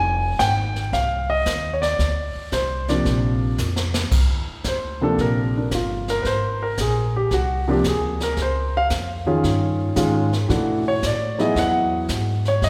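A grand piano and a pizzicato upright bass open this relaxed jazz piano trio excerpt together, with a brushed drum kit joining at 0.4 seconds over a gently swung 4/4 feel. The piano sits up front with an intimate, natural tone, and its audible action noise adds a close, human detail. The bass sounds woody and thumpy with steel strings, while the drums bring dark cymbals, a medium-tuned snare and a boomy kick, played with brushes. A short drum fill at 3.6 seconds leads into a new section at 4.1 seconds, where the piano takes a solo through to the end. The harmony moves from Fm7 through Ebmaj7, Ab and Db before closing on Bm7 and Eadd9. Everything sits in a wet, spacious reverb like a church or concert hall, giving the trio a warm, relaxed glow.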